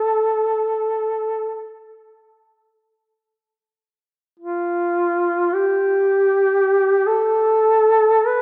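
A lone duduk sounds from the very start, its mellow, softly attacked notes scooped and shaded with vibrato as it drifts in free time through a narrow span from F4 to B4 in a mournful, longing Caucasian folk style. Though it sits up front, the instrument carries a distant, roomy quality, bathed in a lush concert-hall reverb with a 2.1-second decay that lingers around each phrase. This short passage of 8.4 seconds is cut from a longer piece.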